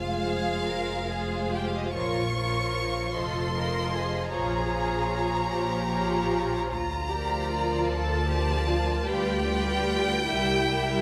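A lyrical, warm string-orchestra passage opens at once with the full ensemble: an expressive, close-up violin melody carries the tune over a focused second violin line, smooth and even violas, a symphonic cello section, and an up-front double bass section with a smooth top. In a slow 6/8 at 51 BPM with uneven, rubato pacing, the harmony moves from F minor through B-flat minor, F7 and G7/D to a C7, with vibrato colouring every section. The bowed strings sound rich in a moderate scoring-stage reverb, and this 11-second passage is cut from a longer romantic movement.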